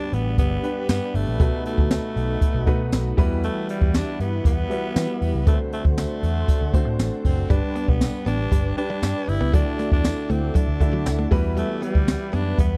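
A breathy, raspy alto saxophone carries the melody through this short, nostalgic and dramatic 1980s-style pop passage at 118 BPM, its scooped notes and vibrato sitting over a polished grand piano accompaniment. Up front, a jazz drum kit played with brushes sets a straight 4/4 groove of hi-hat, boomy kick, high-tuned snare and tambourine, while a dark, foam-muted picked electric bass holds down the low end with a round tone. Very quiet layers of glassy FM pad with a slow attack and long release, plus mellow, detuned synth brass stabs, fill in the harmony as the chords move from G through B7, Emadd9 and D7 before returning to G. At 7.5 seconds a clean, compressed electric guitar recorded direct slips into the background with a riff touched by subtle chorus. The overall sound is dry and close, like a 1970s-style studio recording, in a passage cut from a longer piece.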